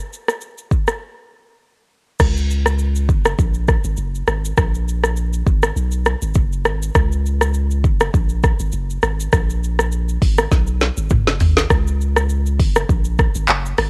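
This short afrobeats fragment has a dry, close, home-cassette sound, with the drum kit carrying its own tape coloring. The mood is sultry and hypnotic, moving at 101 BPM in 4/4 with a light 16th-note swing. An electronic, produced afro-pop drum kit sits up front, with a deep kick, a woody snare and dark hats alongside rim clicks, handclaps, shaker, toms and crash cymbal. The kit opens the track and breaks at 1.0 s. At 2.2 s a punchy sine sub bass enters up front, ranging from F#1 to C#2 with a fast, pitch-dropping attack and a sustained, deep body. A drum fill at 10.5 s leads into the closing section.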